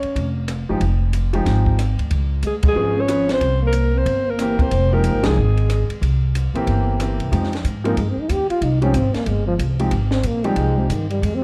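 Smoky and swinging, this short cut from a longer small-group swing and bop jazz piece sets a dark alto saxophone with vibrato and scooped notes up front over woody pizzicato upright bass, a compact cocktail drum kit with a high-tuned snare and punchy kick, a vintage grand piano and a breathy, soft-attacked trombone that carries a second line before taking a solo from 7.3 seconds, with band accents at 2.6 and 5.2 seconds, all in a dark production with light reverb.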